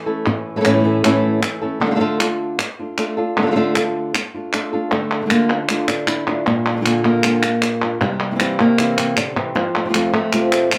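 A fingerpicked flamenco guitar carries the melody in this mournful, passionate flamenco excerpt, its warm acoustic tone spanning A2 to A4. A second fingerpicked guitar, dark and up front, plays stabbing chords beneath it from the very start. Crisp palmas hand claps with a live-room sound, also placed close, join at 0.3 seconds. The music moves at 155 BPM in a straight 4/4, with the harmony opening on A and turning to Dm. A second section begins at 4.9 seconds and passes through Bb and C7 before settling on F. A wet studio reverb with a short 0.5-second decay surrounds the performance.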